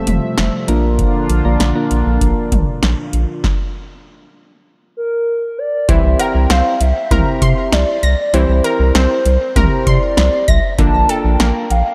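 A straight 4/4 pulse at 98 BPM from a dry electro drum machine with a deep kick, punchy snare and metallic hats drives this bright, nostalgic synth-pop excerpt in C mixolydian, anchored by a round, up-front analog bass. Soft, mellow electric-piano-like keys and a shimmering chorused pulse-width pad carry the opening chords, with the pad stopping at 3.4 s as the music halts briefly, before a hollow, woody clarinet-like lead with vibrato returns at 5.0 s and a detuned analog pluck adds arpeggios from 5.9 s. The mix is dreamy and soaked in plate reverb, with tape echo trailing the lead and pluck.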